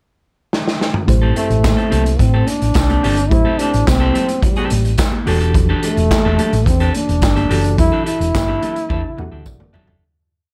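A vintage drum kit drives a four-on-the-floor disco beat at 108 BPM in A dorian, opening with a fill at 0.5 seconds before a punchy kick, sixteenth-note hats and a snare layered with handclaps settle in. From 1.1 seconds a dark, round hollow-body bass plays a syncopated line under choppy sixteenth-note clean guitar, reedy electric piano chords with fast tremolo held in the background and a very quiet syncopated conga groove, joined at 1.6 seconds by a jingly tambourine on the backbeat, all moving from Am7 to Em11. Up front, a breathy, whispered trombone carries a sultry, intimate hook with vibrato and scooped notes, while the piece fades out from 7.8 seconds under a closing drum and electric piano fill.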